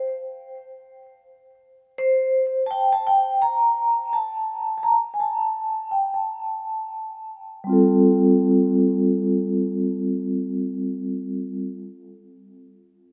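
A vibraphone struck with medium hard mallets carries this short hip hop fragment alone, its metallic, ringing tone sitting up front with a medium motor vibrato. The mood is cool and warm at once, moving at 84 BPM in 4/4 with a 16th-note swing. Running from G3 up to Bb5, the bright mallet part passes through a low-pass filter and an analog delay, and a filter sweep shapes it through the opening stretch. At 7.7 seconds the piece moves into a new section, where the harmony settles on a G9sus4 after an unharmonized start. A lush hall reverb surrounds the sound, and the clip, cut from a longer piece, comes across as a rough home demo mix.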